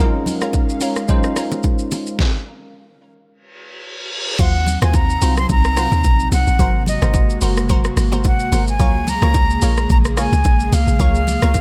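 A swung 4/4 amapiano groove at 109 BPM with a deep, soulful mood, this excerpt opens on a bell-like tine electric piano with analog chorus over an airy, breathy pad and a round, chorused analog pluck with delay, joined at 0.3 seconds by an up-front deep house drum kit and dry, close congas and bongos, before a reverse cymbal at 3.6 seconds leads into a drop at 4.4 seconds where a close-miked concert flute carries the melody with digital delay over a dark, percussive log drum bass, all set in digital ambience across chords moving from Db6 through Ebm69 and Ab9.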